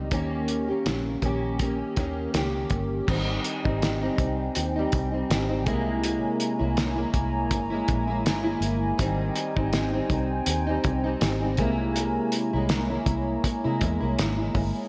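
A fingerpicked, plugged-in steel-string acoustic guitar with warbly chorus and slapback echo, a round, foam-muted vintage electric bass and a cloth-damped, thuddy drum kit with a fat snare and dark cymbals open this nostalgic, laid-back bedroom-pop excerpt together at 81 BPM in Ab major, before a hollow, flute-like pad enters at 3.1 s as the chords move from Abmaj7 to C7b9b13 in a big, reverberant space with a rolled-off top.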